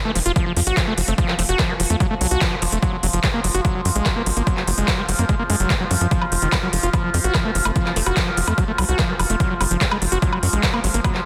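Psychedelic trance at 146 BPM in a straight 4/4, this short excerpt from a longer piece feels hypnotic and alien, holding one section throughout as the harmony moves from F5 to Gbmaj7sus2 at 2.8 seconds, back to F5, and on to Gb5. A punchy, overdriven electronic kick and an overdriven big-room drum kit of handclaps, crisp hi-hat and woodblock sit up front, both re-recorded in a large room. Beneath them a tight, driving sequencer bass of sawtooth and square waves gives a mellow filter pluck with fast attack and decay, while a squelchy, gritty acid bass riff with a resonant filter sweep rides above it through sidechain pumping and delay. A nasal drone of sawtooth and sine holds sustained chords with moving overtones, a slow attack and long release, its chorus, built-in reverb and sidechain pumping adding to the trance pull. A very quiet, juicy blip pluck, detuned and phased with a moving notch, surfaces briefly from 1.1 to 2.9 seconds and again near 7.7 seconds, all within a dense, heavily limited modern master with light reverb.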